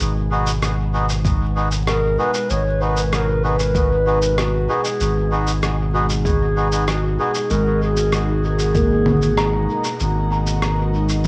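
Spacious and deep, this ambient dub excerpt moves at 96 BPM in G# minor, resting on a single G#m7 chord as a breathy pad with chorus and phaser holds sustained chords and a felt-muted upright piano, boxy with audible action noise, spins arpeggios through dub echo over a round, up-front sub bass. Muffled sampler-style shaker, rim click and congas run throughout, a thumpy electronic kick joins at 1.2 seconds, and a reedy, nasal melodica with 12-bit grit and low-pass filtering adds echoing stabs from 0.3 to 7.3 seconds. A distant, dark clarinet carries the solo melody from 1.9 seconds, all set in light reverb with a home-cassette tone and vinyl crackle.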